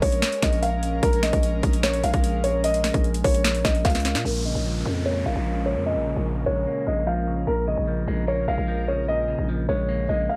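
Overdriven trap drums with a hard-clipped kick, sharp snare, metallic hats and finger snaps hit up front for the first 4.2 seconds of this brooding, eerie half-time trap excerpt at 149 BPM in Bb minor, where a dark, boxy grand piano with audible action noise carries the melody over a growling, buzzy 808 bass and an airy, breathy, detuned pad with chorus, until a clean, picked electric guitar enters at 4.2 seconds and an electronic downlifter falls in at 4.3 seconds under a filter sweep, all set in a gritty digital ambience.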